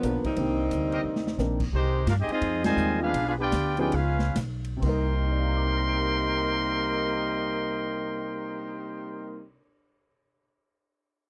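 Sultry and dramatic, this big band swing fragment in C minor moves between 124 and 177 BPM with a swung feel, cut from a longer piece. A smooth, tight saxophone section with light vibrato opens on the melody over a natural-sounding baby grand piano, a woody, growly pizzicato upright bass and a polished drum kit with a punchy kick, hi-hat, ride and crash. Mellow trombones carry a second line from 0.2 seconds, a clear trumpet section adds a brief stab, and after a drum fill the vintage-toned trumpet section takes over the melody at 1.7 seconds with a soft attack. The band slows through a dramatic passage of Abmaj7, Fm7, G7b9 and Db7 chords, punctuated by an ensemble accent at 2.6 seconds, before returning to Cm7. The recording is dry and close in a 1970s studio manner, with the saxophones and melody trumpets placed up front.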